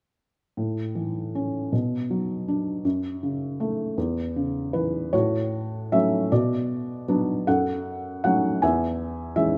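Swaying in a rubato 6/8 at 52 BPM counted in dotted quarters, this peaceful classical excerpt in A major unfolds as a tender, lyrical solo for felt-muted upright piano, heard from 0.6 to 9.6 s across a range from E2 to G#5. The piano sits up front with a soft, mellow, intimate tone and short sustain, framed by moderate recital hall reverb. It moves through two sections, the second beginning at 5.1 s as the gentle progression of A, Bm, F#m and C#m/E returns with an A6 colouring its opening chord.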